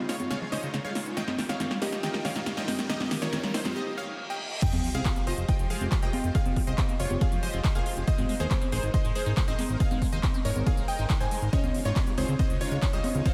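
A straight 4/4 pulse at 139 BPM drives this euphoric, uplifting trance passage in F minor, as an overdriven big-room dance drum kit with crisp hats and congas, a fat, sidechain-pumped analog bass, a lush supersaw pad, a bright unison pluck melody and a squelchy liquid acid bass arpeggio through a phaser build toward the drop at 4.6 s, accented by a very quiet riser, reverse cymbal and sub drop, where a punchy, up-front electronic kick and a dark, intimate grand piano with audible action noise enter, joined at 11.5 s by a glassy, crystalline wavetable pluck, all soaked in a dreamy hall reverb.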